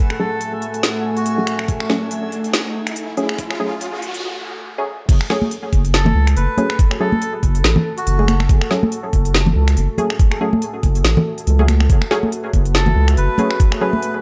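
Deep dubstep with a meditative, heavy half-time swing, where a moody detuned pad, a reversed granular swelling texture, muted filtered chord stabs with 12-bit sampler grit, and a riser and noise sweep build over a deep house kit of woody snare and smooth hats and a knocking, up-front electronic kick, until the drop at 5.1 seconds brings in a saturated sine sub bass and damped, high-tuned congas soaked in dub echo, while a reedy, breathy melodica drifts in and out through its own echo.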